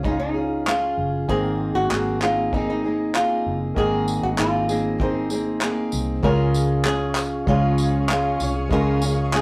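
A fingerpicked steel-string acoustic guitar, a worn, woody upright piano sitting in the background, a round, foam-muted electric bass and a cloth-damped drum kit open this sunny, easy-going acoustic pop excerpt together, with a flamenco guitar carrying the melody from 0.1 seconds. The guitar accompaniment sounds dark and up front, while the slightly detuned piano has a short sustain. The bass is amped and forward, and the dry, rolled-off drums deliver a tight kick along with handclaps and tambourine. The flamenco guitar is fingerpicked, with audible finger squeak, over a harmony that moves from Db to Abadd9 and back to Db at 6.2 seconds. At 6.8 seconds an ethereal, airy pad drifts in quietly behind the band with a slow attack, ensemble chorus and its own reverb. The whole take has the rough feel of a rehearsal room, with a wet studio reverb and warm saturation.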